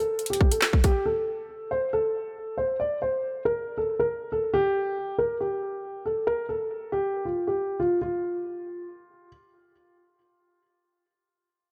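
Drill hip hop in a half-time feel, ominous and menacing, cut from a longer piece. A dark, boxy concert grand piano sits up front with the melody through a low-pass filter from the start until 9.3 seconds, while an electronic drill kit of hard-clipped kick, woody snare, metallic hi-hats and handclaps hits only briefly between 0.2 and 0.9 seconds. Light reverb colors the recording, and the music moves into a new section at 8.0 seconds.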